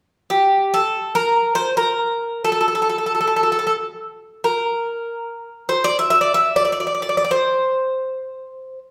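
In free time, this melancholic, wistful fragment of Greek folk music features a bright, metallic acoustic bouzouki, up front with its picked double and partly octave-doubled strings, carrying the melody from 0.3 to 8.8 seconds inside a large, reverberant studio room where the band plays live together.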